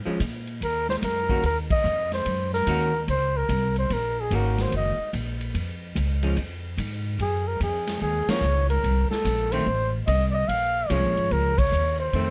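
A close-miked flugelhorn carries the melody up front, its warm, vibrato-laced jazz tone sitting in plate reverb as it solos between Ab4 and F5 from 0.6 seconds. This is cool, swinging small-group jazz in the swing and bop vein, set in Bb minor at 146 BPM in 4/4 with swung eighths. Underneath, a woody pizzicato upright bass with steel strings sits close to the listener, while a dark, clean hollow-body electric guitar supplies picked accompaniment through chords moving from Bbm to Db, Gbmaj7(no3), Adim and Bbm7. A big-band drum kit with a punchy kick, medium-tuned snare, hi-hat and ride sounds distant and roomy, as if heard across a hall. The whole band hits accents at 1.6, 8.2 and 11.5 seconds in this short passage cut from a longer piece, all wrapped in light reverb.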